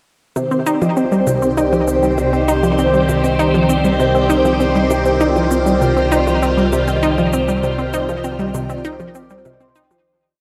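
Mysterious and expansive, this short, complete piece of ambient, sequencer-driven space music moves at 99 BPM in C minor, built on a single Cmadd9 chord carried up front by a swirling, vintage string machine with ensemble chorus and phaser. A round, detuned analog pluck repeats a 6-step sequence that drifts against the bar through chorus and tape echo, while an airy, metallic vibraphone with fast motor vibrato ripples a 10-step arpeggio in the background, and a resonant, bubbling stepped-filter texture holds a high note in its own reverb. A warbling, pulse-width-modulated analog drone settles in on the root at 1.3 s, light overdriven machine blips with cabasa and high conga tick underneath, and the whole cassette-toned recording, set in a moderate plate reverb, fades out from 6.8 s.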